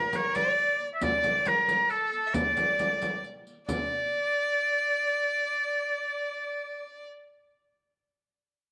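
A clear, vibrato-laden oboe opens this brief excerpt of a Persian modal ensemble piece, carrying the melody up front in a classical style with a vintage character, while a rich, smooth violin sounds beneath it as a second line, bowed by one player with an even vibrato. The music moves in 6/8 at 90 BPM counted in dotted quarters, in D avaz esfahan with tuning set to A4 = 437 Hz, and its mood is hypnotic and melancholic. A deep frame drum played with hard hands and a riq with bright jingles join from 0.1 seconds, both sitting distant in a large room, the riq further in the background, and both stop at 3.9 seconds. From there the oboe and violin continue as a pair until the cut at 7.1 seconds, with the passage shifting into a new section at 3.7 seconds. The whole is framed by light reverb and a small room ambience, keeping the oboe intimate and forward against the more remote percussion.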